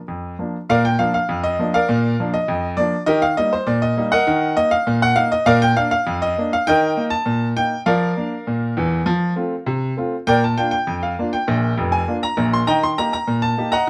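A clear upright piano carries this cheerful, lively ragtime on its own, playing solo for the full 13.9 seconds of a passage cut from a longer piece. Set in Bb major at 100 BPM in a straight 2/4, it keeps the mood light and lively. The piano's tone is woody and smooth with a vintage character, sitting up front, and its range reaches from F1 in the bass up to C6. The harmony moves through Bb, Eb and F, touching Bb/F before settling back to Bb and turning again to Eb near the close. Close, detailed microphones and a touch of light reverb capture every note with clarity and a small sense of room.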